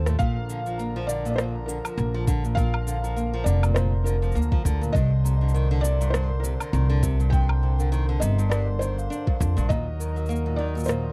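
Pastoral and warm, this short folktronica excerpt has a lightly swung 16th-note feel and a dry, close 1970s-style studio sound. A soft, muted, felt-muted upright piano carries the melody with audible action noise and tape echo, while a fingerpicked nylon-string guitar plays bright arpeggios beneath it. The pizzicato upright bass sits up front, woody and warm, and a pedal harmonium breathes reedy sustained chords in the background. A large celesta adds a bell-like, delicate second line with tape echo, ringing softly behind the other parts. Overdriven electronic rim click, cabasa and woodblock mix with a soft overdriven electronic kick, which drops out at 9.8 s as the harmony moves from Bb through Cmadd9 to Ebm.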